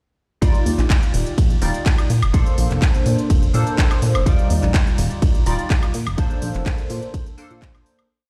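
Filtered disco house at 125 BPM in a straight 4/4, this short, complete piece in Bb major feels funky and joyful, living entirely in a drop from 0.4 seconds and fading out from 5.5 seconds. A punchy electronic kick sits up front with a four-on-the-floor pulse, while a crisp, programmed house kit adds claps, closed and open hats, ride and a high woodblock, its hats, cymbals and percussion all pumping against the kick. Beneath them, a plucky analog bass built from sawtooth, square and sine waves with wave-folding plays a funky syncopated line, its filter pluck giving a fast attack and mellow decay as it pumps too. Higher up, a funky polysynth comp in drop-2 voicings holds chords with syncopated pushes, colored by chorus, phaser, a filter sweep and a cassette-tape haze, all breathing with sidechain pumping. The harmony simply alternates Ebmaj9 and Bbmaj9, and the dry mix carries a hint of a stone room heard through a big sound system.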